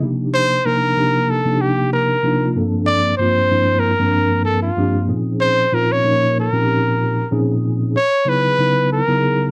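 A lightly swung 4/4 at 95 BPM carries this slick, intense jazz fragment, where a mellow, clean tine electric piano with ensemble chorus, heard through its built-in speakers, accompanies from the start over Cm11, Gm11, Bbm11 and Dbm11 chords while a warm solo trumpet with light vibrato and slapback echo enters at 0.3 seconds to carry the melody up front, all set in a dry, close 1970s-style studio sound touched by light reverb.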